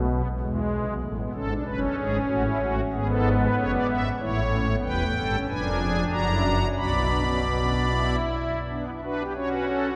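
A pipe organ drawn on its strings celeste stops carries this short, elegant fugue alone, its soft, shimmering tone placed up front and spanning a deep pedal low to bright upper lines. Written in four voices in a baroque manner at a steady triple metre, the music feels joyful as it moves from a major-key opening into a darker minor turn near 4.8 seconds, led there by diminished harmonies. A long cathedral reverb surrounds the playing, giving the fragment, cut from a longer work, the spacious glow of a church or concert hall.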